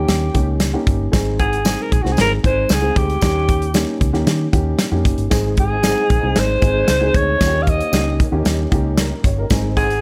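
A straight 4/4 pulse at 115 BPM drives this urgent, uptempo 1960s-style soul excerpt, set by a polished, airy acoustic drum kit with a punchy kick, a medium-tuned snare and hi-hat sitting up front, while a bright, jingly tambourine rattles close but in the background. Underneath, a foam-muted, fingered electric bass gives a round, amped and punchy low end. A dark, woody upright piano, slightly detuned and a little boxy, fills in the accompaniment as the harmony alternates between Eb7 and Ab. Out front, a growling alto saxophone carries the melody as a jazz-style solo, raspy and gritty with vibrato. At 5.3 s a very quiet, mellow tonewheel organ slips in with sustained chords, its percussive attack, key click and rotary speaker adding a clean shimmer. Studio reverb wraps the whole band, heightening the driving energy of this fragment cut from a longer piece.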